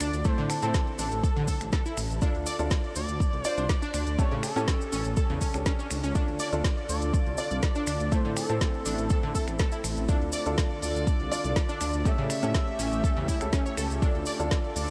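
An up-front, deep electronic kick drives this emotional, driving progressive house excerpt at 122 BPM in D minor, alongside a deep house kit with woody snare, smooth sidechain-pumped hats and finger snaps, a grainy background cabasa, a rumbling, saturated detuned saw bass, bright, punchy unison pluck arpeggios with lush chorus and delay, dark, mellow baby grand piano stabs with audible action noise, and a smooth, nasal synth lead melody with vibrato, while a very quiet electronic swell appears at 5.4 seconds before a thick unison pad enters at 6.5 seconds with sustained chords in light reverb.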